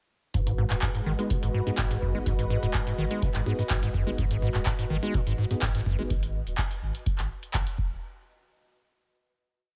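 A straight four-on-the-floor kick with a deep, tape-warm thump drives this short, trippy acid house piece, joined by a booming analog drum machine playing metallic closed hats and a clapped backbeat, while a round sine sub bass moves in a dotted rhythm underneath. Up front, a squelchy, resonant square-wave acid line runs a 16-step riff with accents, slides and a filter sweep, pushed through overdrive and cassette tape, and a detuned sawtooth pad holds sustained chords over a G#m7 with chorus and gritty 12-bit sampler colour. From about 1.1 seconds an ethereal, reverb-washed airy pad drifts through slowly shifting chords, and a mellow, clean tine electric piano adds syncopated, delayed chord stabs, with sidechain pumping on the pads and basses, before the groove ends at 8.0 seconds.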